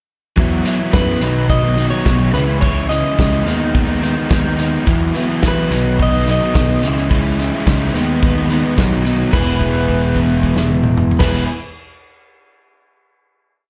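A straight 4/4 indie four groove at 107 BPM drives this short, carefree, jangly indie rock piece in E major. A loose acoustic drum kit sits up front in a small room, with a medium-tuned snare, a tight kick and a rolled-off top. A growling picked electric bass, bright and overdriven, stays locked to the kick drum, while an up-front overdriven electric guitar strums chords with slapback echo. Further back, a raw garage guitar picks arpeggios through overdrive, analog chorus and slapback echo. From 0.9 seconds, a guitar through a small old amp plays a fingered, slightly broken-up, lo-fi melody built from motifs in period phrases. The verse cycles through Esus2, B, C#madd9 and G#m/D# before landing on a final E chord at 9.3 seconds, held until 11.2 seconds, and the band is heard as a live gig through the venue's PA with light club reverb.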